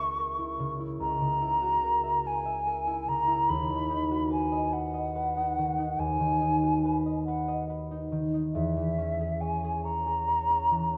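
Warm and lyrical, this short excerpt from a romantic classical duo unfolds in a rubato 12/8, with a hollow, silvery concert flute singing the melody up front with pure, tongued vibrato while a mellow concert harp supports it with ringing thumb-plucked accompaniment, the pair bathed in a wet concert hall reverb.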